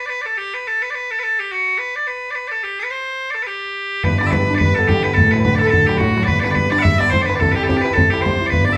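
Swung at 214 BPM in 4/4, this lively, bright Celtic reel in G major opens with piercing bagpipes playing the melody alone up front, until at 4.0 seconds a polished baby grand piano and a damped, distant bodhran join, and a moment later a nasal, lightly vibrato bowed fiddle adds a smooth second line, as the band plays live in one room with a wet large-studio reverb, a faint mains hum, and the cut taken from a longer piece.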